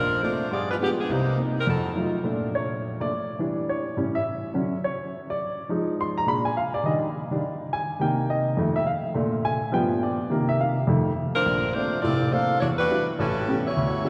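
A long, wet church reverb fills this joyful, swinging jazz passage, giving it the spacious ring of a large hall, and it is cut from a longer piece. A bright saxophone section carries the melody up front, its ensemble voicing marked by vibrato and soft attacks in an idiomatic jazz style. Beneath it, an upright piano with a woody, vintage character and short sustain accompanies throughout, sitting just as close to the listener. The saxophones state the theme only briefly before the piano takes a solo from 2.2 seconds to 11.4 seconds, moving through rich harmony that includes chords such as Em7, A7 and Dmaj7. The horns return at 11.3 seconds to restate the theme over extended chords like Em9 and A9 as the passage breaks off.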